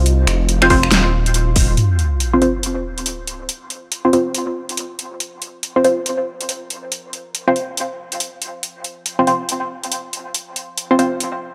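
Deep dubstep at 140 BPM in a half-time, swung feel, this meditative, heavy excerpt opens on a dark, detuned saw bass with a rumbling, beating low end, alongside a flickering, grainy texture that sits very quiet behind it until both stop at 1.8 seconds. A moody analog pad holds sustained chords in the background throughout, coloured by chorus, phaser and a vintage 12-bit sampler grit. Muted, filter-plucked dub chord stabs with short decay come up front from 0.6 seconds, treated with phaser and dub echo. The drum kit brings a huge snare, metallic hats and finger snaps with studio reverb, and a punchy, tape-warm electronic kick appears briefly in the opening bars. At 1.8 seconds a sub drop lands as an impact, leading into the second section, where pad, stabs and drums carry on. The sound is dry and gritty, with light digital ambience.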